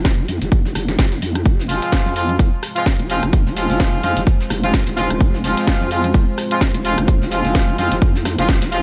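A punchy, tape-warm electronic kick sits up front in this aggressive, swaggering bass house excerpt, alongside a nasal, overdriven wobble bass with a vowel-like formant sweep and sidechain pumping. A layered house kit adds a cracking snare, rim clicks and hi-hats, while a brushed jazz kit with shaker sits far back in a small room. From about 1.5 seconds, a deep, detuned analog pad holds moody chords in the background, and at 1.7 seconds a tight, octave-doubled horn section joins with bright stabs trailed by dub echo.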